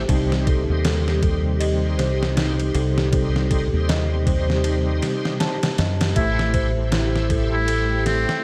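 Trip hop at 79 BPM in 4/4, with a lazy 16th-note swing and a cinematic, brooding mood, heard as an excerpt cut from a longer piece. A gritty, pitched-down sampler-style drum kit with a thumpy kick, medium-tuned snare and ride cymbal sits up front beside a round, punchy dub fingered bass. Above them, a bright, shouting tonewheel organ with light overdrive, chorus vibrato, slow rotary speaker, harmonic tremolo and tape echo carries the accompaniment. A dry, close-miked celesta spins bell-like arpeggios roughened by 12-bit sampler grit and delay, while a dark, detuned analog pad holds sustained chords in the background. Over a harmony that moves from Cm to Am7, a buzzy, breathy trumpet with metal mute enters at 6.2 seconds with a brief jazz-style melody, and at 7.1 seconds a very quiet, tense string-like drone with phaser adds texture. Vinyl crackle runs throughout, lending the sound a dusty, sampled feel.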